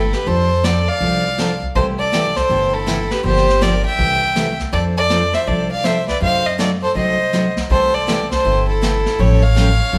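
Cheerful and swinging, this short western swing excerpt in C major moves at a brisk 162 BPM with a swing feel on the eighth notes. A rich, nasal fiddle carries the melody up front with light vibrato and an airy bow, while a second, clear fiddle plays a close second line beneath it. A woody, thumpy upright bass, plucked on gut strings, anchors the bottom, and a vintage brush kit with a medium-tuned snare and hi-hat sits mid-forward with a rolled-off top. From 0.3 seconds a bright, full-bodied dreadnought acoustic guitar adds picked accompaniment through sixth chords, a diminished seventh and an augmented seventh. The band sounds like it is playing live together in one large studio, with moderate reverb around the earthy fiddles.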